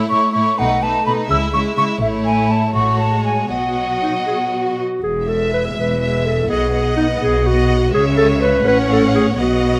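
A flexible, rubato 6/8 at 82 BPM in dotted quarters underpins this quick, lively and cheerful classical-period orchestral movement in E major, cut from a longer piece, where rich, expressive violins carry the melody above a focused second violin line, soft-attacked viola accompaniment with portamento, and a lush, smooth bass of cellos joined by clear double basses at 0.6 s, while an airy, hollow flute adds a crisp second line until 4.7 s and a warm, up-front solo clarinet enters at 4.0 s, the whole heard through close, detailed microphones in light reverb.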